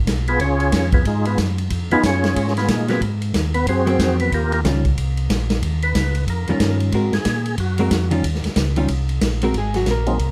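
Soul jazz organ trio at a brisk 184 BPM in 4/4 with a swung, greasy and soulful feel, cut from a longer piece in Ab mixolydian over Db9, Ab9 and Eb9 harmony. A fat, lightly overdriven tonewheel organ with percussive second-harmonic attack, key click, chorus vibrato, slow rotary speaker and plate reverb takes the lead solo up front from 0.3 seconds, while a mellow, round second organ with slow rotary carries the bass line from the start. A vintage acoustic kit with punchy kick, medium-tuned snare, hi-hat and ride sits close with a rolled-off top, and a dark, clean, compressed hollow-body electric guitar joins on picked accompaniment at 1.9 seconds, all in a moderate club reverb.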